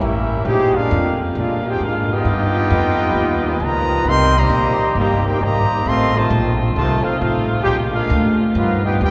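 Energetic and swinging, this 9.1-second big band excerpt in Bb major at 134 BPM sets a dark, softly attacked trumpet section up front on the melody over a clear trombone second line, warm vibrato-laden saxophone chords sitting in the background and a woody, growly pizzicato upright bass, all bathed in the long wet reverb of a church or concert hall as the chords move from Bb7 through G7alt, Cm7 and F7.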